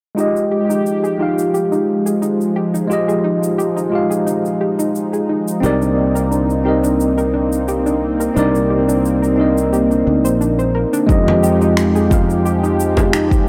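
A clean tine electric piano sits up front in this warm, wistful sunset chillout excerpt, playing accompaniment in F dorian at 88 BPM in a straight 4/4, coloured by a low-pass filter and tape echo. Beneath it, a lush, thick unison pad of detuned sawtooths with an airy noise layer holds sustained chords through chorus and phaser, while a soft, round pluck with a dark, ring-modulated edge spins arpeggios in the background under a filter sweep. Electronic shaker and finger snaps keep time in a small room ambience as the harmony moves from Fm9 to Cm9. At 5.6 seconds a bright, growly fretless electric bass enters, punchy and up front with a subtle chorus. At 11.1 seconds a deep electronic kick joins, followed moments later by ringing, hard-handed congas, as the filter sweep shifts onto the electric piano, all framed by light reverb and a dry, gritty hardware sound.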